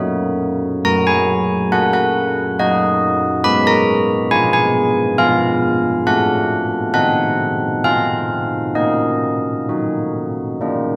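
Bathed in the wet reverb of a scoring stage, this wintry, solemn classical tune for church bells in Eb minor moves at 68 BPM in an uneven 3/4, with a solo carillon sounding bronze, close and up front, its iron clapper and minor-third overtone ringing from F#3 to Cb6 through harmonies that pass from F# to Fdim/Ab and settle on Ebm/Bb at 8.8 seconds before the passage breaks off from a longer piece.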